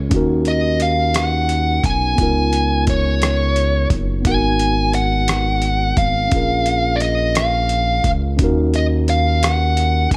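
A dark, overdriven lead guitar carries the melody up front from 0.5 seconds, its picked electric line colored by slapback echo, in this sultry, late-night slow six-eight R&B. Beneath it a smooth sawtooth-and-triangle synth bass sits forward, a mellow tine electric piano lays clean, direct chords through a progression that opens and closes on D#m7, and a dusty sampler-style soul kit of hi-hat, thumpy kick and rim click sounds gritty and compressed, with overdrive, as if re-recorded in a small room. The mix carries little reverb.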